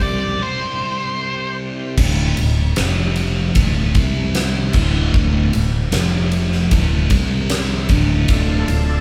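A dark octave-fuzz lead guitar with tape echo opens this heavy blues rock and southern rock fragment alongside a thick, gritty tonewheel organ drifting through slow rotary speaker in the background, a double-tracked sludgy distorted guitar riff up front, a growly, bright fingered bass and a huge arena kit with a fat snare, punchy kick and bright cymbals, all sounding like a band playing live in one large reverberant room through a break from 0.4 s until the lead drops out at 1.6 s and the organ stops at 2.0 s, returning only at 8.3 s.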